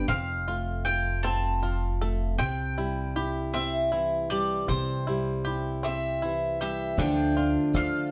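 A round, bright mandolin carries the melody up front in this nostalgic folk excerpt in 6/8, over a warm fingerpicked steel-string acoustic guitar, a mellow, twangy bluegrass banjo playing arpeggios and a woody, thumpy pizzicato upright bass, while a full-bodied picked jumbo acoustic guitar joins in the background at 7.0 seconds as the chords move from F and C to D minor, the band playing live together in one room with a wet studio reverb.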